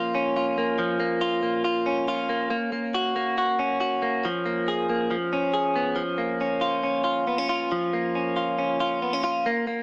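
Through a small-speaker, echo-heavy mix with light digital ambience, this breezy indie pop excerpt features a lone clean electric guitar, twangy, picked and up front, its luminous tone bathed in lush chorus and tape echo, playing from 0.0 to 9.8 seconds over chords that shift from A#m/E# through F#/A# and C#7 before returning to A#m/E# at 6.0 seconds.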